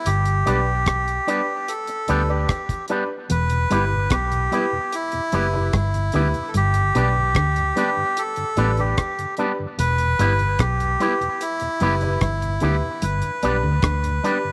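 A reedy, breathy melodica opens this hypnotic, meditative roots reggae excerpt at 0.0 seconds, its nasal, up-front melody trailed by tape echo. A dark, round, punchy muted bass sits prominently beneath it, alongside a dry, smooth drum kit of hi-hat, rim click and a tight kick. A bright, twangy guitar with an envelope filter and its own tape echo adds clean picked accompaniment, while a clear, somewhat boxy grand piano contributes short-sustained stabs. At 3.3 seconds a very quiet, hollow-bodied semi-hollow guitar joins with a low fingered riff, followed at 3.5 seconds by a soft, flute-like tonewheel organ turning slowly through a rotary speaker with vibrato. The harmony sways steadily between G and E minor in a straight 4/4 feel, all held together by a light reverb.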